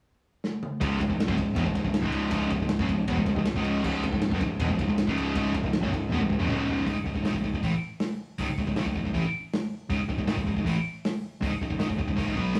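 A rough rehearsal-room sound with light reverb and small-room ambience frames this heavy, aggressive heavy metal excerpt in C# minor at 158 BPM, where a dark, smooth drum kit with a tight kick opens on a fill at 0.4 seconds before an up-front sludgy overdriven guitar, a bright high-gain distorted guitar, a double-tracked raw garage guitar that drops out at 6.9 seconds, and a growly, punchy bass in the background pound out riffs over C#m and then C#5.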